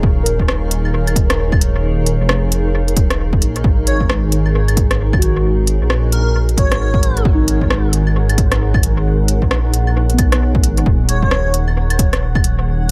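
A wistful, nocturnal future garage fragment at 133 BPM opens with muted felt-like synth keys carrying 12-bit grit and dub echo, a blurred granular cloud pad, a deep, rumbling detuned saw bass up front and a punchy overdriven kick, all but the kick pumping to the sidechain, as a crisp organic electronic kit of claves, hi-hat and rim click swings over Ebm7 and Abm7 chords, while an airy, dreamy lead with cassette-tape colour and vibrato floats in at 3.9 seconds and returns briefly at 11.1 seconds within an echo-heavy digital ambience.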